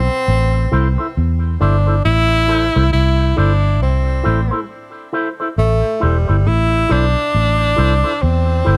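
A breathy tenor saxophone and a dark, round electric bass open this roots reggae excerpt together, settling into a laid-back, hypnotic groove at 68 BPM in 4/4 with a swung sixteenth-note feel. The saxophone carries the melody in a whispered, intimate jazz style, its soft attack and vibrato sitting up front with a tape echo trailing its phrases. Beneath it, the foam-muted, fingered bass holds the low end with an amped, vintage tone and is the most prominent part in the mix. At 0.7 seconds an electric guitar joins as accompaniment, its bright, twangy picked notes shaped by an envelope filter and also carrying tape echo, set further back than the other parts. The whole passage rests on a single A minor chord, with a light reverb giving the sound a gentle sense of space.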